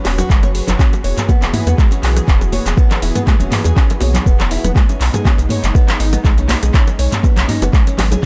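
Earthy and spiritual, this afro house excerpt at 121 BPM sets a deep, up-front electronic kick beneath a round, nasal analog bass, a fingerpicked nylon-string guitar arpeggio with finger squeak and tape echo, a smooth, warbling detuned pad on sustained chords, metallic-hat afro-pop kit parts with handclaps, shaker and toms, and ringing congas with low-tuned bongos in the background, all in a dry, gritty sound as the harmony moves from E to B69 at 4.8 seconds.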